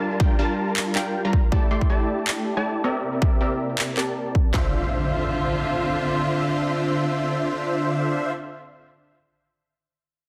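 Future bass at 159 BPM in D minor with a half-time, swung feel, this bittersweet, lush excerpt opens with a punchy, detuned supersaw stab riff up front and a distant, bowed string section holding sustained chords in the background, both pumping against the sidechain as filter sweeps move across them over the first 4.5 seconds. An overdriven big-room drum kit with a punchy kick and tape-tinged electronic handclaps drives the opening bars, while the harmony moves through Gm7, A7sus4 and C7 before settling on Dm7. At 4.5 seconds an electronic impact lands as the drums drop away, leaving the delayed supersaw and expressive strings in a moderate digital reverb under a dense, heavily limited master.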